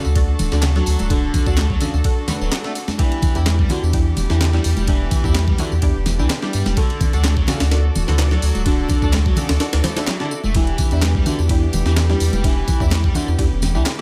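A dry, raw mix with little reverb opens straight onto a swaggering breakbeat groove at 127 BPM in E dorian, a short cut from a longer piece with a light swing on the sixteenths. Up front sit a gritty, compressed sampler-style drum kit, with a thumpy kick, medium-tuned snare, hi-hat and ride re-recorded in a large room, and a deep, thick saturated sub bass that enters at 0.1 seconds. A distorted, double-tracked electric guitar riff carries tube saturation and dub echo, while muted, mellow filtered sawtooth chord stabs pluck and decay through subtle chorus and their own dub echo. In the background, a rich, earthy chamber string section holds bowed chords with light vibrato, roughened by vintage 12-bit sampler grit and sidechain pumping, alongside tape-warm layered electronic tambourine and handclaps and hard-handed congas in a live room. The harmony moves between D and Em7, and a very quiet electronic swell passes at 9.8 seconds.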